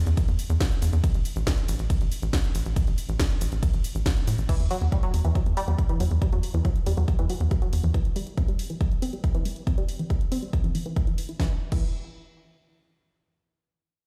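The sound is dry, yet it carries the hard ring of a bare stone room, as if played back through a big sound system, in this euphoric, driving uplifting trance cut from a longer piece at 139 BPM in E minor. It opens on a drop, with a heavy, up-front electronic kick and a tight, punchy sequencer bass that pumps against the sidechain in its mellow sawtooth and square-wave plucks. A layered techno kit fills in with a cracking snare, hi-hat, shaker, ride and crash, all re-recorded in a large room and sitting low beneath the kick. At 4.5 seconds a dark, evolving synth arpeggio enters over an Esus2 chord, shimmering with chorus and digital delay, pumping with the sidechain and moving through a filter sweep. The bass drops away at 7.9 seconds as the harmony shifts to C, leaving the arpeggio and drums to drive on.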